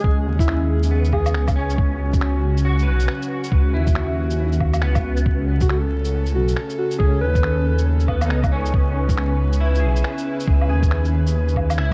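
A nocturnal, ghostly future garage excerpt at 138 BPM opens with a dark alto saxophone, breathy airy pad, slightly broken-up electric guitar with ensemble chorus and dub echo, and a deep, rumbling detuned saw bass. A muffled, thumpy kick is there from the start and shaker, finger snaps and woodblock join at 0.4 seconds, both carrying a gritty 12-bit sampler character and a swung 16th-note feel, while the pad, guitar and bass pump against the sidechain. The smooth-topped, jazz-style sax, with vibrato and scooped notes, returns from 5.6 to 7.8 seconds, just after the chords move from C#m to A, all within an echo-heavy mix dusted with vinyl crackle.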